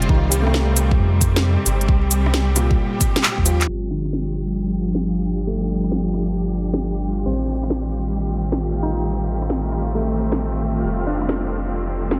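A lush, bowed symphonic string section sits up front in this melancholic, nocturnal future garage excerpt, its vibrato-rich sustained chords pumping under sidechain compression and moving from Cm7 through G7(no3) and Am7b5 to F9, with a filter sweep on the strings from 3.7 seconds. Beneath it, a deep, round sub bass with a triangle and square wave character adds tube saturation. An overdriven electronic drum kit, with a woody snare, crisp hats, cabasa, handclaps and rim click, carries a swung groove. A tape-colored electronic kick drives the opening until 3.4 seconds, overlapping a drum fill that, with a band accent, leads into the second section. A soft, felt-muted upright piano with audible action noise and short sustain adds mellow, intimate accompaniment through dub echo. From 4.8 seconds, a reversed, detuned granular texture swells dreamily in the background, bright and soaked in its own reverb, while a moderate recital hall ambience wraps the whole mix.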